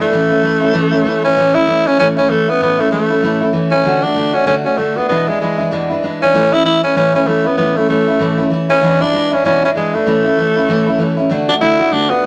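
A breathy tenor saxophone leads this rollicking, rowdy rock excerpt, its bright, raspy tone close-miked and up front, with a gritty, punchy edge and a touch of vibrato in a pop-style solo voice that stays within a compact range from G#3 to E4. Beneath it, a picked steel-string acoustic guitar supplies the accompaniment, its full-bodied dreadnought sound also placed up front, with audible finger squeak adding texture. The tempo is a brisk 193 BPM in 4/4, with a swung eighth-note feel that gives the groove a loose, bouncing drive. In A major, the harmony moves through A, D and E7, returning to A at 6.3 seconds and again at 10.1 seconds before turning to D at 11.3 seconds. Both parts play from start to finish over about 12 seconds, set in a moderate studio reverb that keeps the sound lively and close.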